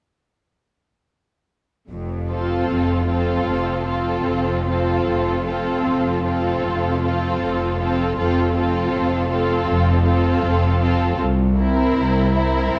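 Cellos and double basses open at 1.9 s with a deep, bowed foundation, the cellos close yet set in the background and the basses distant, before violins and violas join at 2.3 s in a lyrical, rubato passage for string orchestra, cut from a longer slow romantic movement. One violin section carries a smooth, even melody while the second, up front with a soft attack, sings an expressive line beneath it, and the violas play a rich, smooth, even accompaniment, all the sections playing with lush vibrato. The harmony rests on F before moving to C7 at 11.2 s, and a wet recital hall reverb gives the whole a dark, warm glow.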